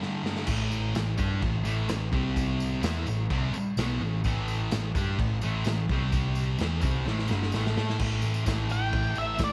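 A straight 4/4 pulse at 128 BPM drives this gritty, menacing garage rock clip in A minor, opening with a brief break and drum fill from a raw, punchy kit before a round, hollow-body picked bass with overdrive and a jingly tambourine in the background join at 0.5 s. From the start, a thick, double-tracked fuzz guitar riff sits up front over chords moving between A5, C5 and Am. A second drum fill at 7.1 s leads into a closing solo from a dark octave-fuzz lead guitar at 8.7 s, while the kit's saturated, rolled-off sound and the small room ambience keep the recording close and rough.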